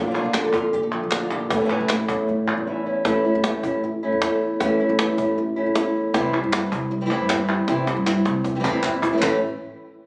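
Captured on a phone in a stone room with club reverb and compression, this fiery, mournful flamenco excerpt moves at 156 BPM in straight 4/4, its chords passing from Bb to A and on to C. Up front, a fingerpicked flamenco guitar carries the melody through plate reverb with audible finger squeak, while a second fingerpicked guitar adds stabs until 3.1 seconds, just after a short break begins at 2.7 seconds. A thumpy gut-string upright bass and a woody cajon with faint snares and soft hands hold the groove throughout, crisp, band-limited palmas claps return at 6.3 seconds, and a drum fill closes the passage.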